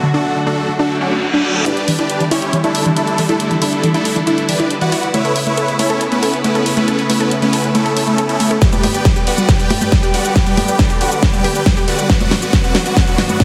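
Uplifting trance at 138 BPM in E dorian, euphoric and driving, this cut from a longer piece opens with a bright, detuned supersaw melody carrying phaser and delay, a lush unison pluck arpeggio and a dark, reedy, distant string section holding sustained chords, all three pumping to the sidechain while filter sweeps move over the pluck and strings. A very quiet reverse cymbal and riser lead into a build-up at 1.7 seconds, where a big-room dance kit with a huge snare, congas, hi-hat and shaker enters up front. The chords move from Em7 through Aadd9, and a punchy electronic kick joins with a drum fill at 8.6 seconds as the harmony reaches G and then Bm, all set in a lush hall reverb with a heavily compressed, radio-ready sound.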